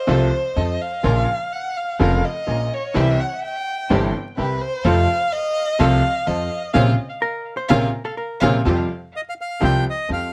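Sultry and dramatic, this short tango fragment from a longer piece moves at a flexible, rubato pace in four. A single bowed violin carries a solo line for the opening stretch, its tone expressive with vibrato and portamento, sitting up front yet carrying a faint tape echo that lends it a distant air. Beneath it, a clear, slightly detuned upright piano with short sustain and a woody pizzicato upright bass on steel strings anchor the harmony, while a rich studio string section plays soft-attacked, sul tasto stabs in the background. Near the close of the violin's passage, around 6.8 seconds, the band adds accents, and at 7.2 seconds a dark, clean, compressed hollow-body electric guitar briefly joins with a picked second line. As the violin drops out, a reedy, bright bandoneon takes the melody at 9.2 seconds, set up front over light reverb and a thin layer of vinyl crackle.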